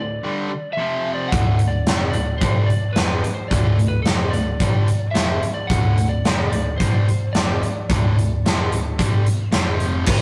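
A straight 4/4 pulse at 110 BPM drives this swaggering, energetic hard rock excerpt, where a bright, double-tracked sludgy distorted guitar riff and a slightly broken-up, compressed lead guitar melody with tape echo open together before a growly, amped overdriven picked electric bass and an airy, polished, up-front rock drum kit with punchy kick, medium-tuned snare, hi-hat and crash cymbal join at 1.3 s, set in a rough rehearsal-room sound with light reverb and warm saturation.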